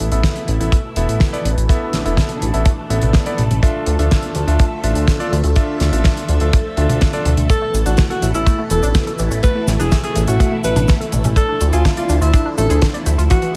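A breathy alto saxophone with light vibrato and scooped notes carries the melody from 7.5 seconds in this sunny, danceable italo disco excerpt, floating over a glossy chorused synth bass, a tight up-front kick, a damped 70s kit with fat gated snare, swirling phased string-machine chords, clangy electric grand piano stabs that drop out at 7.3 seconds, and detuned analog pluck arpeggios arriving alongside the sax.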